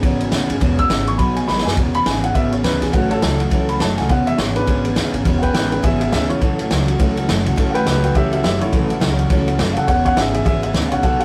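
Retro and upbeat, this short cut from a longer rockabilly piece swings at 207 BPM in 4/4 in E mixolydian, with a rough rehearsal-room feel and light reverb. The vintage drum kit sits up front with a tight kick, a medium-tuned snare and dark ride cymbal, its top rolled off, while the woody pizzicato upright bass plays low beneath it. Behind them, a full-bodied picked dreadnought acoustic guitar provides accompaniment and an electric guitar through a small old amp plays a twangy, slightly broken-up riff, both tucked into the background. The dark, mellow upright piano enters at 0.8 seconds carrying the melody, and a drum fill at 1.5 seconds sets up its solo from 1.8 seconds to the end of the cut. The chords move among E6, A6 and B6 beneath the groove.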